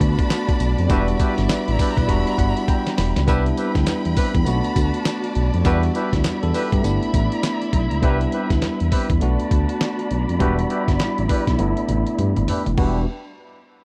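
Bouncy and slick, this new jack swing R&B cut in E minor moves at 101 BPM in 4/4 with a 62% swing on the sixteenths, and it is taken from a longer piece. A gritty, compressed sampler-style drum kit sits up front with a thumpy kick, fat snare, hi-hat, handclaps, tambourine, toms and crash, its sound re-recorded in a large room, while a smooth, dark synth bass blending sawtooth, triangle and sine tones holds the low end with a fast attack and evolving character. A bell-like tine electric piano, bright and clean, carries the accompaniment through a low-pass filter and adds a fill from 2.1 to 3.3 seconds, alongside a drum fill at the same time. Filtered warm studio strings with vibrato and portamento hold expressive bowed chords, and a mellow, distant horn section enters at 0.9 seconds with tight jazz-style stabs softened by a low-pass filter and tape echo. The harmony cycles through Cmaj7, Bm7, Em7 and G6, with a filter sweep running across the middle section from 3.3 to 12.8 seconds, and the whole is a dry, close 1970s-style studio recording.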